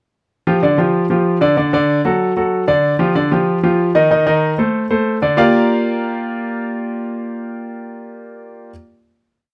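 A clear grand piano plays alone from 0.5 to 8.7 seconds, laying out an octave montuno in this short, sunny and danceable Latin piece in Bb major at a brisk 189 BPM. Its intimate, up-front tone carries audible action noise and long sustain, captured by close, detailed microphones in a moderate studio reverb. A brief passage of shifting chords resolves at 5.4 seconds onto a final Bb6 chord that rings out to the end.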